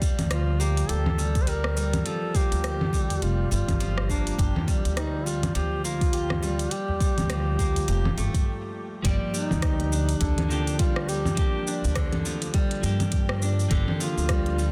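Organic downtempo with a hypnotic, mystical air, this short cut from a longer piece rides a swung groove over a single Gm7 chord. A steel-string zither played with fingerpicks rings out silvery arpeggios through tape echo, while a deep electronic kick and an organic electronic kit of congas, crisp hi-hat, rim click and shaker, re-recorded in a large room, carry the beat, the snare roughened by soft clipping. A woody, thumpy upright bass on gut strings adds dark pizzicato lines with tube saturation and sidechain pumping. Over this, a duduk sings a folk-style solo melody with vibrato and scooped notes, trailed by delay, and a very quiet, band-limited udu adds vintage colour between 3.1 and 7.9 seconds. After a brief stop, a clean, picked electric guitar joins at 9.0 seconds, pumping and echoing, all within a small room ambience and a dense, heavily limited modern master.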